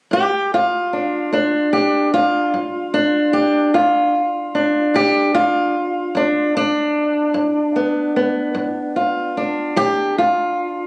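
Captured on a phone in the room, the recording carries a light club reverb and the unpolished feel of a live room. A fingerpicked old ladder-braced acoustic guitar sits up front, its tone dark and boxy, and it plays alone from 0.1 to 10.9 seconds. This short cut from a longer acoustic country blues piece moves at a slow 50 BPM in a straight 12/8, resting on a G7 chord in G mixolydian. The guitar spans G2 to G4, and its tuning sits slightly high at A4 = 444 Hz. The mood is laid-back and soulful, unhurried and easygoing.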